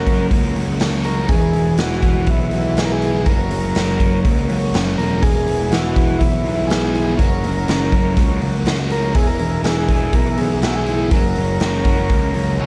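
Hazy and hypnotic, this psychedelic rock excerpt pairs a reedy, overdriven combo organ melody with analog delay against a double-tracked fuzz guitar riff with phaser, a round, dark fuzz bass, a gritty, punchy garage drum kit up front in a pumping stone room, and soft, flute-like tonewheel organ chords turning slowly through a rotary speaker in the background, all circling between F# and E.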